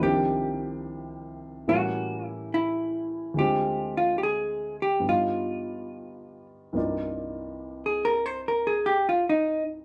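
The recording has a close, smoky intimacy, set in a studio room with a short, wet reverb and heard from a little further back. This slow jazz piece swings gently at 71 BPM in C minor, moving through Cm11, A7b9, Dm7b5 and G7b13 before returning to Cm11. A vintage hollow-body electric guitar carries the melody up front, with a dark, clean, picked tone in its middle register. An upright piano accompanies throughout, woody and polished, its short-sustaining notes carrying audible action noise. At 6.7 s the guitar moves into a solo over the piano as the piece shifts into a new section, and the excerpt, cut from a longer performance, closes with the piano.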